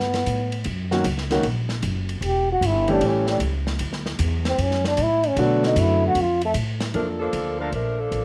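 This home recording on cassette has light reverb and is cut from a longer joyful, swinging big band jazz piece. A cup-muted trombone carries the melody as a solo until 6.9 seconds, its veiled, breathy tone intimate and up front, with soft attacks, scooped notes and a vintage tape color. Beneath it, a pizzicato upright bass sounds woody and thumpy, while a drum kit with dark cymbals and a medium-tuned snare swings on hi-hat, ride and snare with an airy, polished feel. A baby grand piano enters at 0.9 seconds with natural-sounding accompaniment over the shifting chords. At 7.0 seconds a tight saxophone section takes over the melody with light vibrato and a smooth top, and a clear trumpet section adds a brief stab just after.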